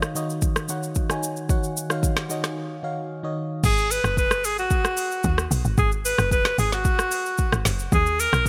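Bright, lightly reverberant 1980s-style digital production frames this hypnotic, late-night amapiano excerpt in G# minor at 112 BPM, where a mellow, phaser-treated FM electric piano and an electronic afro-pop drum kit with deep kick, metallic hats and shaker open on D#m7, and after a break at 2.6 seconds a drop at 3.6 seconds brings in a punchy, percussive woody log drum bass and an intimate, close-miked breathy alto saxophone solo with light vibrato and delay over G#m7.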